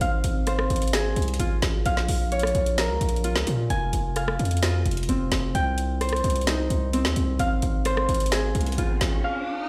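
A distorted 808-style bass dominates this brooding, eerie trap fragment, heavy and saturated with a fast attack, a decaying sine body and a noise layer sitting up front. Above it, a bright, thumb-plucked Celtic harp rings out in arpeggios, its tone shaded by a low-pass filter and tape echo as it moves through Ab6, Bbm, Fm and Cm before returning to Ab6. The electronic trap kit plays in a half-time feel at 130 BPM, with a woody snare, rim clicks and metallic hi-hats. An electronic riser enters at 8.3 seconds, and the bass drops out at 9.2 seconds, leaving the harp and riser to carry the brief break to the close. The whole piece sounds as if played on a big sound system in a bare room, with a stone-room reverb lending a cavernous chill, and it is cut from a longer piece.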